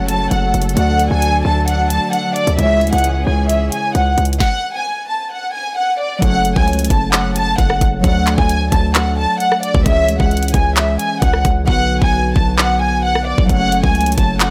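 A dark, hard-hitting trap excerpt opens at once with a violin section carrying the melody, its bowed tone shadowy and intimate with vibrato and a soft attack, set close and up front. Beneath it, warbling lo-fi synth keys with a nostalgic, vintage square-and-sawtooth character and chorus supply the accompaniment, while a veiled, con sordino string section holds sustained chords until 4.4 seconds. A heavy, punchy 808-style bass with a fast attack and decaying sine tone anchors the low end, and an electronic trap kit enters almost immediately in a half-time feel, with a knocking kick, sharp snare, bright hi-hats, handclaps and rim clicks. After a stop that breaks the groove, the second section arrives at 6.2 seconds over the returning minor-key progression, and the hi-hats drop out between 11.7 and 13.5 seconds before the passage is cut from the longer piece. Light reverb gives the up-front mix a touch of space.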